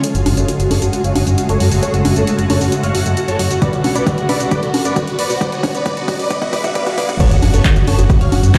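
Soaring and bittersweet, this excerpt of uplifting trance in F# minor at 134 BPM builds through a filter sweep on a huge, euphoric, detuned supersaw lead, taped and echoed and pumping against a solid, round FM bass and a shimmering, ethereal pad with octave-up shimmer, while a punchy analog drum machine plays congas, handclaps, hi-hat, shaker and crash. A punchy, tape-warm electronic kick joins at 3.6 s with a drum fill as a background riser climbs over the move from F#madd9 to Bm. At 7.2 s the drop lands with an impact back on F#madd9, all set in a large studio reverb that evokes a big sound system in a bare room.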